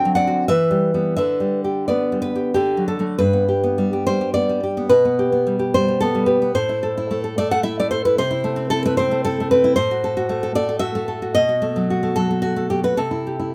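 A bright, up-front nylon-string guitar, fingerpicked in classical style, carries this melancholic and passionate romantic solo piece in G major, moving in a rubato 3/4 that drifts between 84 and 117 BPM across a range from G2 to G5. An opening passage moves through Em, G/D and D before a new section begins at 3.2 seconds, settling on G and then darkening through Am, F#dim/A and B7 before reaching C at 13.0 seconds. Light reverb gives the guitar the natural air of a single room, and the recording is a short cut from a longer piece.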